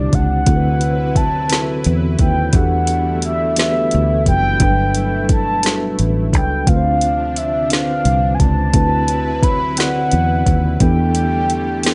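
Slow six-eight R&B with a tender, sensual mood, cut from a longer piece, where a horn-like synth lead with a soft attack, vibrato, chorus and slapback echo sings the melody up front over a mellow tine electric piano heard through its built-in speakers. A lush, detuned unison pad with chorus holds thick, nasal sustained chords, while a round, foam-muted fingered electric bass sits beneath a smooth electronic drum kit with a soft kick, woody snare and metallic hi-hats. The harmony moves through rich extended chords such as D13, Em11 and Gmaj9 in a lightly reverberant mix with nothing above 10.5 kHz.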